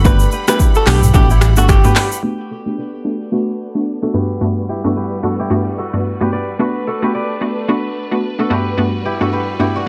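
Afrobeats with a joyful, romantic glow opens this excerpt, swinging lightly over a gentle alternation of Gmaj7 and Bm7 chords. Up front, a hollow, bouncy square-wave pluck carries the accompaniment, detuned and chorused with a fast attack and short decay, while a fingerpicked kora rings out a crisp riff through delay. Behind them, a lush studio string section holds sustained chords with intense vibrato, softened like the pluck and kora by a low-pass filter. For the opening 2.2 seconds, an electronic afro-pop kit with a deep kick, crisp hats, snaps, claps, rim clicks, shaker and toms drives the groove, joined until about 1.8 seconds by a dark, round fingered bass, while a clean, compressed electric guitar picks a short melody coated in spring reverb and delay from 0.1 to 2.1 seconds. From there the drums, bass and guitar fall away, leaving the pluck, kora and strings to float through a long filter sweep in a close, dry mix.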